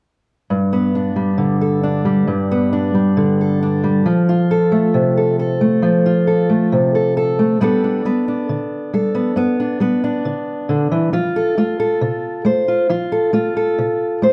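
A fingerpicked steel-string acoustic guitar opens at 0.5 seconds, sitting up front with a dark tone and the occasional finger squeak. This is a folk piece in G major at 136 BPM in a straight 4/4, its mood nostalgic yet anthemic. The guitar carries the accompaniment alone, ranging from G2 to C5 and moving between Gadd9 and F chords. That two-chord pattern repeats when the second section begins at 7.6 seconds. A moderate, large studio reverb gives the guitar a concert-hall sense of space within a warm production, and this short cut from a longer piece ends at 14.3 seconds.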